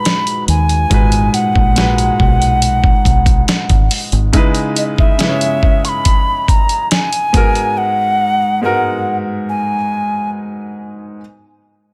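A bright clay ocarina with pure tone, vibrato and a crisp chiff carries the melody over clear, intimate grand piano with audible action noise, while a smooth, detuned sawtooth pad with chorus sits faintly in the background and drops out almost at once, setting a sensual, late-night contemporary R&B mood in this cut from a longer piece. A gritty, compressed sampler-style kit with a thumpy kick enters up front at 0.1 s, and a deep, round, foam-muted fingered bass plays briefly before stopping at 4.3 s as the chords move from G#m7 to C#m7 and back to G#m7. The drums fall away at 7.8 s, leaving ocarina and piano in a dry, close sound.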